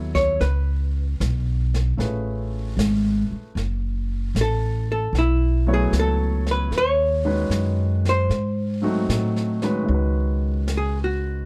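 A dark, clean hollow-body archtop guitar carries the melody of this intimate, wistful swung jazz ballad, backed by natural-sounding grand piano, woody, thumpy pizzicato upright bass and a softly set brushed drum kit with a boomy kick, all in a dry, dusky mix before the guitar moves into a solo at 9.9 seconds.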